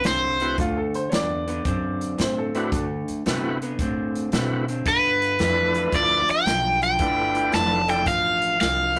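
Gritty and swaggering, this electric blues shuffle excerpt swings over D13 moving to G13 at 4.9 seconds, with a bright, overdriven lead guitar up front playing melody in a brief opening burst and again from 4.9 seconds, a dark, slightly broken-up lo-fi guitar riff, woody pizzicato upright bass, an airy country drum kit with punchy kick and medium-tuned snare, thick overdriven tonewheel organ with key click through a slow rotary speaker, and an intimate upright piano with audible action noise adding a second line between 0.6 and 2.8 seconds, all captured in a rough rehearsal-room sound with tube saturation and light reverb.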